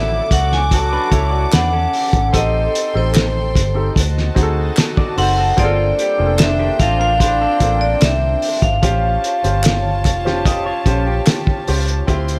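Light reverb and small-room ambience give this lush 1970s-style soul excerpt an intimate, silky sheen, with a smooth, unhurried feel in a straight 4/4. A metallic, ringing vibraphone played with hard mallets carries the melody until 11.2 seconds, its vintage, band-limited tone sitting over a soft-attacked string section that floats a sul tasto second line through tape echo. Underneath, a concert grand piano supplies accompaniment with deep bass, audible action noise and short sustain, while a clear horn section with light vibrato adds pop-style stabs until 8.0 seconds. A dark, foam-muted fingered electric bass sits up front, round and punchy, beside a cloth-damped, thuddy drum kit that comes in at 0.3 seconds, muffled and gritty with a fat snare, a tight kick and hi-hat. An electric guitar through a small old amp plays a slightly broken-up, compressed picked riff, and crisp, close group handclaps sit dry in the background. 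Rich jazz-tinged chords such as Dmaj9, Gm11 and A7alt give the harmony its plush, late-night colour.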